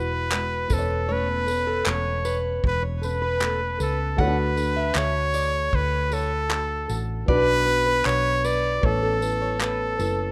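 Carefree and easy-going, this short acoustic pop excerpt moves at an unhurried, straight four-beat pace under a light reverb and the rough feel of a home demo mix. Up front, a clear, close-miked trumpet carries the melody with vibrato and a punchy pop-style tone, touched by a digital delay. Beneath it, a round, amped hollow-body short-scale electric bass, fingered and also placed up front, anchors the low end. A soft brush kit joins at 0.3 seconds, bringing a tight kick, handclaps and tambourine with a dark, rolled-off top that suggests a small room. Further back sit a thumb-plucked nylon-string guitar with old strings and a woody, deep classical body, a fingerpicked, plugged-in jumbo steel-string guitar playing arpeggios, and a mellow, intimate felt-muted upright piano. The harmony moves from Eadd9 through Aadd9/E to D and Bm before arriving on Aadd9, with the excerpt cut off around 10.3 seconds.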